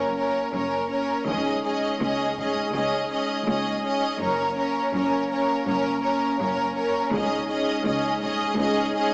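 A dark, relentless epic orchestral film-score excerpt builds as up-front vibrato violins carry a focused melody over a smooth second violin line, lush violas, mellow close-miked French horn chords, and rich cellos and distant double basses in the background, while a distant taiko ensemble struck with hard sticks enters at 1.3 and again at 7.1 seconds, all bathed in a wet scoring-stage reverb with a small-speaker sound.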